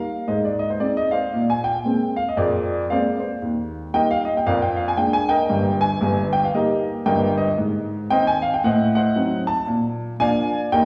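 Stride jazz in Eb major at 115 BPM with a light swing, this short, playful and exuberant passage features a lone upright piano, dark and woody with a mellow vintage character and long sustain, placed up front and spanning from deep bass notes to the upper register. It moves through a progression of Ab, Bb9, Eb and Bb7/F chords before passing through Adim7 to land on Bb7 near 9.7 seconds. A lush recital-hall reverb surrounds the piano, giving it the resonance of a church or concert hall.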